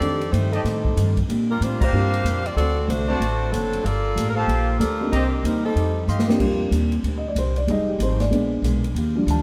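Swinging and energetic, this big band jazz excerpt in Bb major moves at 188 BPM with a clear saxophone section carrying the melody up front over a dark baby grand piano, a bright picked steel-string acoustic guitar in the background, a woody pizzicato upright bass and an airy drum kit, while a trumpet section with light vibrato adds stabs from 0.5 seconds, a band accent hits at 1.8 seconds, and after a drum fill the piano takes a solo from 6.4 seconds, all heard from further back in an echo chamber.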